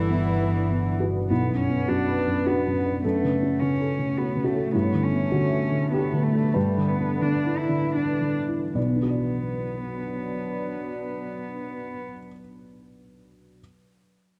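In a three-beat metre with a rubato feel, this fragile, longing neoclassical piece for piano and strings eases and slows through its middle stretch, as though the phrase is reluctant to move on. An upright piano sits up front throughout as the accompaniment, its woody, boxy tone mellow and shadowed, with notes that fade quickly and reach down into the low bass. Beneath it, a deep ambient pad holds sustained chords, its detuned, evolving texture softened by chorus and its own reverb. A bowed cello played sul tasto carries the second line with light vibrato and an airy, intimate touch until about 12.1 seconds. A bowed viola and a dusky bowed double bass are heard only briefly at the opening, the bass sounding a single low note until 1.3 seconds. The production is dark and warm, with a light reverb, and this fragment of a longer work ends on the piano alone at 13.6 seconds.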